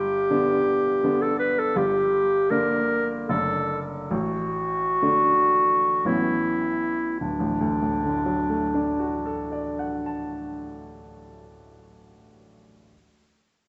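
Clarinet and grand piano begin together in this tender, romantic classical fragment in triple time, cut from a longer piece. The clarinet carries the melody in its lower-middle register with a soft attack and a roomy, slightly distant tone that still sits up front. The baby grand, brilliant and open, plays the accompaniment across a broad span from deep bass to upper treble, slightly beneath the clarinet in level. The rubato phrasing slows through most of the opening section as the harmony moves from G to G minor, then passes through D over F sharp and D over A before settling on D as a new section begins at 7.2 seconds. The clarinet falls silent at 10.7 seconds and the piano rings on alone until 12.9 seconds. A reverberant recital-hall acoustic and a dark, mellow production keep the top end soft.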